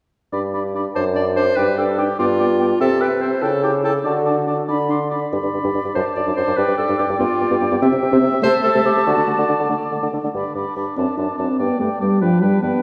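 A quick, spirited classical-period movement for wind quintet in G major, moving at 96 BPM in a straight 6/8 with a graceful lilt, cut from a longer piece. The silver concert flute carries the melody high in its range, its airy, tongued tone softened by rolled-off highs and a gentle vibrato, while the warm oboe sings a second line beneath it with a smooth top and vibrato. The dark French horn, soft in attack, and the clear clarinet, entering at 1.0 seconds, fill in the accompaniment. The mellow bassoon anchors the bass up front with a light vibrato. The harmony circles through G, D/F#, C, A7/C# and D before the opening material returns at 10.3 seconds, and the whole ensemble sounds from further back in a wet concert hall with a long, enveloping reverb.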